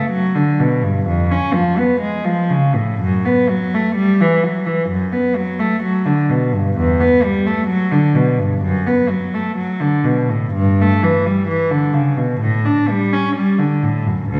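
Classical music in a baroque-style suite movement for unaccompanied cello, this short passage is cut from a longer piece and carries a radiant, dance-like mood. A single bowed cello plays alone from start to finish, its dark gut-string tone reedy in character with a smooth top, shaped in a period style. The playing moves with a free, rubato feel over a steady four-beat metre, ranging from the low D2 up to D4. The cello sits up front, yet the listener seems placed further back in a recital hall whose generous reverb, about 1.7 seconds long, lends the sound a resonant bloom. Tuning rests slightly above standard pitch, fitting the historically minded approach.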